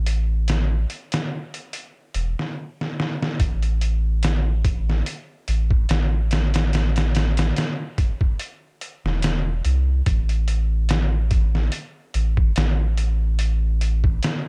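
A slow 72 BPM trip hop groove in 4/4 with a light 16th-note swing sets a hypnotic, dark mood in A minor, as an up-front sampler-style drum kit (gritty, pitched down and compressed, with a thumpy kick, medium-tuned snare and hi-hat, plus a fill from 2.8 to 3.4 seconds) sits alongside a deep, round dub sub bass ranging from E1 to C2, all in a dry, dark production cut from a longer piece.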